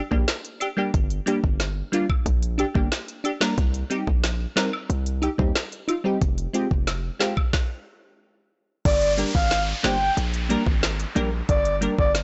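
This dancehall excerpt, cut from a longer piece, feels tough and hypnotic, built on a straight 4/4 groove over chords moving from Gm through Cm and Fm before returning to Gm. A crisp, warbling wavetable chord stab sits up front with a vintage, mellow edge, its unison voices shaped by a filter sweep and a moving notch and pumped by sidechain compression. Beneath it, a hard-hitting 808-style bass delivers punchy, heavy sine notes with a noise layer, while an electronic island pop kit pairs a knocking kick and woody snare with smooth hats. Cabasa and woodblock, heard as tube shaker and group handclap in a small room, sit in the background until the band stops at 7.5 seconds. At 8.9 seconds the music returns with a soft, breathy, flute-like synth lead carrying vibrato and chorus, accompanied by an electronic downlifter. The whole recording is blown-out and overdriven in a digital ambience, with nothing above 7.9 kHz.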